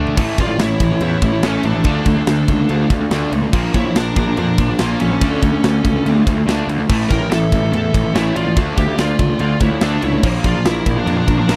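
Heavy metal at 143 BPM in straight 4/4, heavy and aggressive, cut from a longer piece and opening on a drum fill. Three picked, overdriven rhythm guitars grind out riffs: a sludgy one sits in the background, while a second and a double-tracked third stay very quiet underneath. A fuzz-soaked picked bass growls low and punchy beneath them, and an up-front acoustic kit adds a tight kick, medium-tuned snare, bright cymbals, ride, crashes and toms, its sound airy and polished in a big room. From 0.4 s a dark, high-gain lead guitar carries the melody with slapback echo, alongside a high-gain second line further back. The chords move through A, Dm and Bb, and the whole mix sounds dry and close, like a 1970s-style studio recording.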